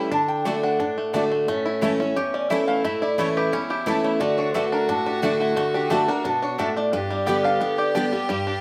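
A straight 4/4 carries this short bluegrass cut, virtuosic and rustic, with a bright, full-bodied picked steel-string acoustic guitar up front, finger squeaks audible, laying down accompaniment over a D, A, D, G progression. The melody is shared by a twangy fingerpicked banjo and a metallic, nasal lap resonator guitar played with slide, while a focused, bowed fiddle with light vibrato adds a second line. A round, double-strung mandolin enters at 0.5 seconds with picked stabs, all set in a moderate studio reverb.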